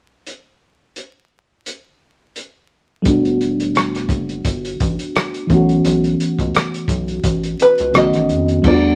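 Vinyl crackle and a moderate studio reverb frame this sultry, late-night neo-soul R&B fragment at 86 BPM in E dorian with a lightly swung 16th feel: a gritty, saturated soul drum kit of dark cymbals, hi-hat, tight kick and rim click starts alone at 0.3 seconds, and a round FM electric piano with chorus and a filter sweep joins at 3.0 seconds alongside a rubbery, nasal square bass over Em11, B9sus4 and B7 chords, before a twangy, plunky fingerpicked open-back banjo enters at 7.6 seconds to carry the melody.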